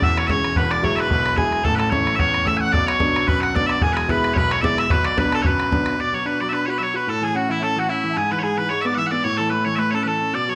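Spirited, dark and lively, this Celtic reel fragment sets piercing, up-front bagpipes on the melody over a distant, airy wooden whistle with vibrato and chiff on a second line, a clear grand piano with long sustain in accompaniment, and a boomy, saturated bodhran that drops out at 5.9 seconds, all carried by a moderate recital hall reverb.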